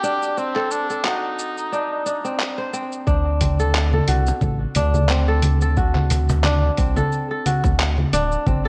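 Organic downtempo with a meditative mood and a gentle swing, cut from a longer piece: a soft, veiled cup-muted trumpet with light vibrato offers a brief tape-echoed melody over crisp, ringing fingerpicked kora arpeggios and a gritty, overdriven sampler-style kit of congas, handclaps, hi-hat and shaker, until at 3.1 s a deep, round analog bass with sidechain pumping and a thumpy electronic kick arrive, joined at 4.3 s by a woody cajon in the background, the whole mix steeped in worn cassette warble and light reverb.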